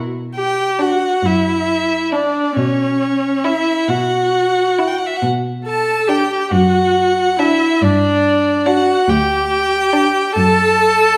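Classical and romantic in spirit, this slow, yearning movement for string quartet unfolds in B minor at 46 beats per minute in 6/8, its uneven beats stretched by rubato, and it is cut from a longer piece. The bowed cello opens alone with a deep, focused bass line, joined within the first second by an up-front, clear viola accompaniment, a smooth, even first violin carrying the melancholic melody high above, and a second violin adding a quiet inner line that falls away at 10.3 seconds. Vibrato colours every voice, and a resonant recital hall wraps the four players in a lingering glow as the harmony passes from B minor through G toward a rootless D chord over F#.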